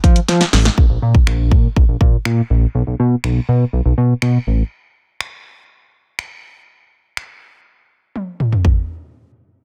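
Dance-pop with a bittersweet, energetic mood, this short cut moves on a straight feel, opening with a drum fill at 0.3 seconds. A retro, glossy synth bass blends pulse-wave, sawtooth and sine tones with chorus, pulse-width modulation and a filter sweep, sitting up front with sidechain pumping until it stops at 4.6 seconds. The layered electronic house kit carries on alone with a punchy kick, soft-clipped snare, bright hats, finger snaps and toms through another fill near 8.2 seconds, all in a dry, dense and heavily limited modern master.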